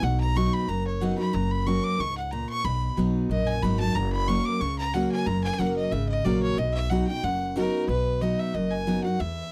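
A dry, close 1970s-style studio sound frames this lively, rustic bluegrass excerpt, where a clear, intense bowed fiddle with light vibrato carries a solo melody up front until 7.9 seconds over a bright, full-bodied picked steel-string guitar and a woody, thumpy pizzicato upright bass on gut strings, the chords alternating between B and F#.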